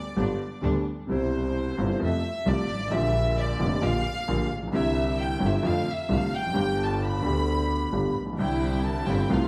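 A moderate recital-hall reverb surrounds this passionate, melancholic tango excerpt played with rubato, where a rich, earthy chamber violin section carries a bowed second line with light vibrato over a worn, up-front baby grand piano with long sustain, a clear bowed double bass, and lush, expressive string-section stabs with portamento at 0.2 and 8.4 seconds.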